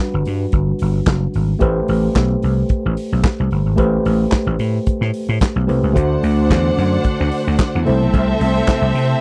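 A worn, slightly out-of-tune tine electric piano with light overdrive opens this glamorous, celebratory disco piece at 110 BPM, joined almost at once by a growly, punchy slap bass and an up-front, dark, smooth soul drum kit of handclaps, hi-hat, tight kick and snare, before a lush, distant bowed string section with vibrato enters at 5.9 s as the chords move from Gmaj7 and Am9 to D7 and C6, in a close, dry 1970s-style studio recording.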